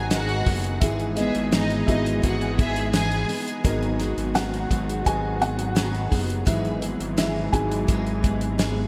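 The felt-muted upright piano leads this piano-driven pop excerpt, its soft, boxy, intimate tone carrying a featured solo across the full 8.9 seconds at an earnest, driving 85 BPM in straight 4/4. Underneath, a damped 70s drum kit sits up front with a fat snare, tight kick and hi-hat, treated with gated reverb, while a thick, saturated analog bass with a detuned sawtooth edge and a filter sweep holds low notes around F#1 to G#1. A picked steel-string acoustic guitar plays a full-bodied dreadnought riff through analog chorus, with audible finger squeak. A warm violin section adds an expressive second line with vibrato and portamento through digital delay, stopping at 3.4 seconds, as a veiled con sordino string section holds dark sustained chords in the background. The harmony moves between G#m7 and Emaj7/G#, and the whole is set in a lush hall reverb with a bright 1980s-style digital sheen.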